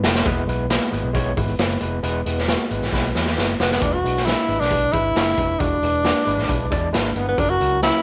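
A straight 4/4 groove at 135 BPM drives this joyful, uptempo 1960s-style soul cut in E mixolydian, with a raw, saturated garage drum kit up front, its boomy kick and medium-tuned snare opening with a fill and adding another from 2.9 to 3.8 seconds, while a dark, round, foam-muted fingered electric bass holds the low end. A bright, barky overdriven tine electric piano with medium tremolo accompanies through a combo amp as the harmony moves from E to E7 and reaches F#7 at 7.4 seconds. At 3.6 seconds a breathy, present tenor saxophone takes the jazz-style solo melody with vibrato, subtone and scooped notes, all set in a small room with light reverb.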